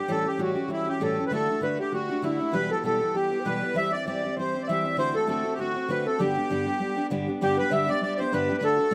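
A swung reel at 197 BPM in 4/4 drives this rollicking, bright Celtic folk piece in G major, with an up-front picked steel-string acoustic guitar giving full-bodied accompaniment beneath a reedy, sweet accordion melody colored by light tremolo tuning. Very quietly behind them, a thumb-plucked Celtic harp rings and a mellow, hollow wooden flute adds soft-attacked vibrato, both playing second lines. The chords move from A7 through D, Em and C/E to D7 before arriving on G, a new section begins at 7.4 seconds, and the whole is set in moderate studio reverb.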